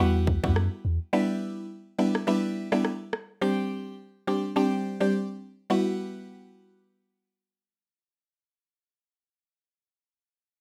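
A swung 16th-note feel at 105 BPM in 4/4 drives this tough, bouncy dancehall excerpt in E minor. An electronic island pop drum kit with a tight kick and rim click sits up front from 0.3 to 3.3 seconds, while a deep, punchy sine sub bass with a pitch-drop attack sounds only in the opening second, between E2 and F#2. Carrying the accompaniment throughout, a woody, round mallet-like FM synth pluck with a sawtooth edge and a noise layer strikes fast and decays, colored by chorus and phaser in the range of G3 to G4. The harmony moves from Emadd9 to G6 and then Csus2, returning to Emadd9 as a second section begins at 5.7 seconds. Moderate studio reverb gives the piece a moderate sense of space, and the overall sound is that of a rough home demo mix.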